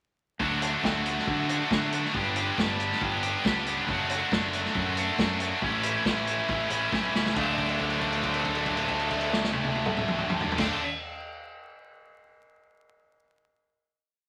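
A heavy, high-gain electric guitar sits up front in this short indie rock piece, its bright, distorted strummed chords double-tracked as it carries the riff with an upbeat, carefree mood. Beneath it, a growling fingered electric bass, direct and amped with a gritty overdrive, plays locked to the kick drum. The vintage acoustic drum kit holds a straight indie four groove in 4/4, sounding mid-forward and warm with dark cymbals, a medium-tuned snare, a punchy kick and a rolled-off top. After a single verse, a drum fill at 6.9 s leads into a final chord at 7.4 s, which rings as a held note until 10.6 s. The whole piece sits in moderate studio reverb, with a layer of vinyl crackle adding an aged texture.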